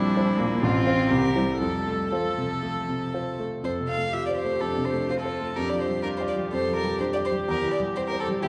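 A rich, pure violin carries the melody up front, its soft-attacked sul tasto tone floating over a quick classical-period movement for piano quartet in F major, moving at 116-127 BPM in 4/4 with a rubato feel. A clear, natural grand piano, also up front and with audible action noise, supplies the accompaniment alongside a close, intimate viola whose airy bow and light vibrato add another sul tasto layer. Beneath them a dark cello shapes a second line, its vibrato and smooth top keeping the sound intimate. All four players sound together through the whole 8.5 seconds of this fragment, cut from a longer piece, with the opening phrase giving way to a new section at 3.6 s. The mood is restless and stormy, set in a wet recital hall reverb that lets the bowed tones bloom.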